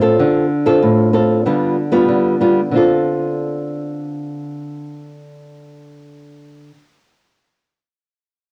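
Bittersweet and nostalgic, this brief samba fragment is cut from a longer piece and rests entirely on a single fingerpicked nylon-string guitar. The acoustic guitar sits small and up front, covering a range from A2 to A4, and its warm tone is colored by cassette tape. Its harmony moves from Dm7 to G7/D, then returns to Dm7 at 2.7 seconds as a second passage begins. A wet, small-room reverb wraps the playing in a close, homely space, matching the intimate feel of a home cassette recording. The guitar plays alone from the opening through to 6.8 seconds, leaving a wistful, unfinished impression.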